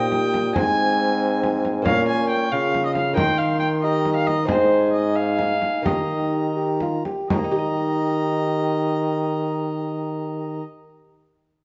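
Festive yet stately, this Renaissance-style consort dance moves in a straight 6/8 at roughly 80-92 dotted-quarter beats per minute, centred on Eb mixolydian and cut from a longer piece. An airy alto recorder carries the tune high in its range, its straight, wooden tone marked by a crisp chiff. Beneath it, an up-front viola with a reedy gut-string character plays a bowed second line. A dark, close-miked bassoon with vibrato and a delicate, very quiet fingerpicked lute with double gut strings fill in the accompaniment, while a present trombone with light vibrato anchors the bass. A deep, large frame drum, compressed and saturated under hard hands, sounds until 7.5 seconds. The tempo broadens from 3.8 seconds as the opening section gives way to a brief second passage, all set in moderate recital hall reverb with a warm, mellow production.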